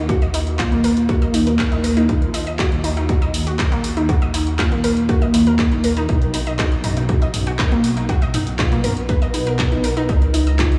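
A dark, rumbling detuned saw bass with tube saturation opens this melancholic, hypnotic melodic techno excerpt in Eb minor at 120 BPM, joined at once by a heavy, tape-warm electronic kick, a punchy analog drum machine of handclaps, hi-hat and toms, and round, bright analog pluck arpeggios carrying chorus, cassette-tape color and a diffuse ambient delay, before a fat, mellow analog lead with vibrato and tape echo enters at 0.6 seconds, the bass, pluck and lead all breathing with sidechain pumping over Eb5, B and Db chords in a dreamy mix soaked in church reverb.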